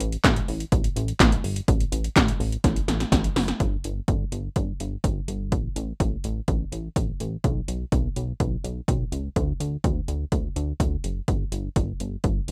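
This rough home demo mix sounds dry and close, with little reverb, and both parts sit up front. It is a driving, cool synth-pop piece in a straight 4/4, cut from a longer work. A chorused synth bass carries the low end throughout, blending pulse and sawtooth waves with pulse-width modulation, a detuned shimmer and a filter pluck that gives each note a fast attack before it sustains, for a glossy yet mellow retro tone. The 80s electronic pad drums play from start to finish with an analog, tape-warm character: a punchy kick, a gated snare, metallic hi-hats and handclaps, with a short room around the claps and hats. A drum fill from 2.6 to 3.6 seconds leads into a new section that runs until the excerpt ends at 12.5 seconds.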